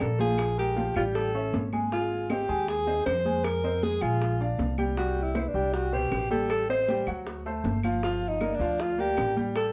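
Sultry and sophisticated, this Afro-Cuban jazz excerpt in G minor moves at 157 BPM, with a close-miked alto saxophone singing the up-front solo melody with vibrato over an intimate grand piano whose audible action noise and deep bass color the chords. A dark, woody pizzicato upright bass sits forward in the mix, while high-tuned congas with a thick skin, tight bongos and woody claves stay in the background. The sound carries moderate studio reverb and the worn, warbling pitch drift of old cassette tape.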